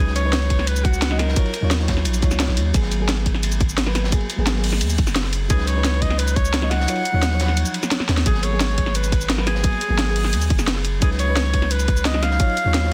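A bright, punchy alto saxophone with jazz vibrato leads this rolling, soulful liquid drum and bass excerpt at 174 BPM in G# dorian, sounding briefly at the start and returning at 5.5 seconds over a mellow, warbling FM electric piano treated with chorus and delay, and a deep, sine-toned 808-style bass. Underneath, a tight, up-front electronic kick and a layered drum and bass kit with a cracking snare and cabasa sit alongside a gritty, saturated breakbeat kit with dark, rolled-off cymbals. The kick drops out from 6.9 to 8.3 seconds, with a drum fill at 8.1, as the chords cycle through C#9sus4, D#m9 and G#m9 in a dense, heavily limited mix with light studio reverb.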